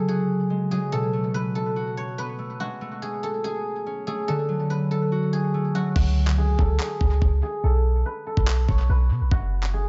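A deep, boomy 808-style bass with a clean sine tone and dark decay arrives up front at 6.0 seconds, joined by a gritty, compressed sampler-style kit of thumpy kick, handclaps and crash cymbal, as a filter sweep opens the menacing half-time trap section at 143 BPM. Before that, an up-front concert harp rings out bright fingerpicked accompaniment beneath a silvery guzheng melody played with fingerpicks, both shaded by low-pass filtering and analog delay over chords such as C#sus4, F#madd9 and D. The eerie hip hop cut sits in an echo-heavy studio reverb with a muffled top end.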